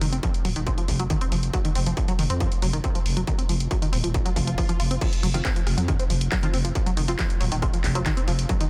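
Relentless and driving, this cut from a longer piece of peak-time techno runs at 138 BPM in a straight 4/4, opening on an F5 chord. A tight, nasal sequenced synth riff built from sawtooth and pulse waves plays throughout, its filtered plucks coloured by chorus, cassette-tape grit, delay and sidechain pumping. Beneath it, a growling, thick FM bass pumps against a distorted, up-front electronic kick that enters at 0.2 seconds, while a layered drum kit adds crash cymbal, handclaps, rim clicks and warm hats, with pumping on the hats and cymbals. A very quiet electronic swell leads into the drop at 5.0 seconds, after which a muted, detuned dub chord stab sits in the background with ensemble chorus, delay and pumping. The drums carry a large-room character within a digital ambience, and the master is dense and heavily limited.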